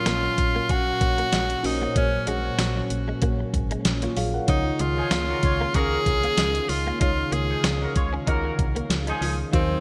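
Nostalgic and romantic, this short cut from a longer 1980s-style pop piece sets an up-front, forceful tenor saxophone melody with light vibrato over bell-like tine electric piano with phaser, a detuned sawtooth pad swelling in the background, a compressed clean guitar riff with chorus and delay, a punchy round FM bass, and a sampler-style drum machine of thumpy kick, fat snare, hi-hat and tambourine in gated reverb, with tight vintage horn stabs entering at 5.0 seconds, all bathed in a lush hall and bright digital production.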